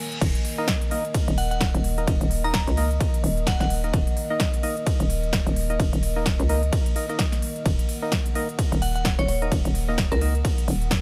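Gritty and bouncy, this bass house excerpt rides a swung groove from an overdriven electronic kick and a big-room dance kit with a punchy snare, crisp hats, ride and crash, set in a dry studio ambience. Up front, a hollow, knocking FM bass throbs with tube saturation and sidechain pumping, while a moody, nasal analog pad holds detuned chords alongside organ-like percussive stabs that trail dub echo. A glassy, crystalline synth bell carries the melody from 1.4 to 3.7 seconds and returns at 8.8 seconds, its chorus and dub echo adding shimmer.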